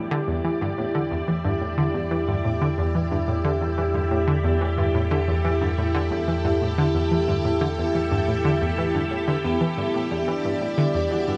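Drenched in a huge, wet ambient reverb with a long 7.4-second tail, this short cut from a longer piece of sequencer-driven space music feels expansive and cosmic, moving at 90 BPM in a straight 4/4 in E minor, resting on an Em7 chord. A lush, vintage string machine holds sustained chords throughout, its full-ensemble chorus and shimmer reverb lending a mellow glow, while a vibraphone played with medium mallets runs ringing, metallic arpeggios through a low-pass filter that sweeps across the whole passage, trailed by tape echo and slow motor vibrato. Up front, a bright, detuned analog pluck repeats a riff in the low register with a fast attack and short decay, thickened by chorus and tape echo. Beneath it, a deep, round analog bass sits on a low E, and a very quiet pulsing gated texture, tempo-synced and bright, hovers in a high register. At 10.1 seconds a soft, octave-layered synth lead enters with a dark, full-bodied tone, carrying a brief melody coloured by chorus, phaser and echo until the cut ends at 11.4 seconds.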